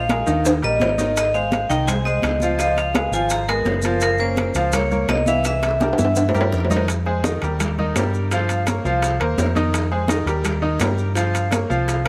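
Salsa with a passionate, danceable drive, cut from a longer piece, where a vibraphone played with hard mallets carries a metallic, ringing melody with slow motor vibrato until 6.5 seconds, over a bright, slightly worn concert grand piano with audible action noise and a dark, round, punchy hollow-body electric bass sitting up front. Timbales with a ringing metal shell stand out most among the percussion, while close, dry congas, tight, distant bongos and grainy, mellow maracas sit further back, and drum fills mark the opening and the lead-in to the second section at 6.9 seconds. Light reverb surrounds the mix, and lossy compression artefacts are audible.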